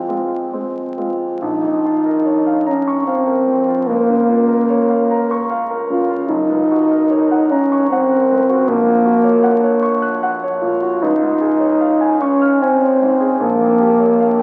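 Romantic classical duo in B-flat minor, solemn and elegiac, moving at 75 BPM in 3/4 with an uneven, rubato pulse. A warm French horn with light vibrato sings the melody in its low-middle range, sounding roomy and distant yet up front, while a bright, brilliant concert grand piano accompanies with deep bass, passing through chords such as B-flat minor, G-flat 6 and D-flat. This short excerpt sits in a wet concert-hall reverb and carries the crackle of a very old 78 rpm record.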